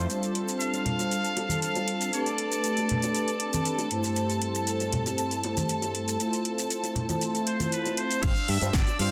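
A dense, heavily limited mix with a moderate digital room reverb frames this sunny, feel-good nu-disco cut in G mixolydian at 118 BPM, where a round, detuned synth brass with chorus and tape echo carries the chords over intimate, sul tasto chamber strings that pump against the beat. A house kit with a cracking snare and metallic hats runs alongside soft-handed egg shaker, bongos and congas, while a nasal, straight-muted trumpet section with delay takes the melody from 0.6 s and returns at 7.5 s. The growly fingered electric bass, heard briefly at the very start, returns at 8.2 s together with a punchy electronic kick as the harmony moves from G7sus4 through Am11, C6/G and Fmaj7 back to G7sus4.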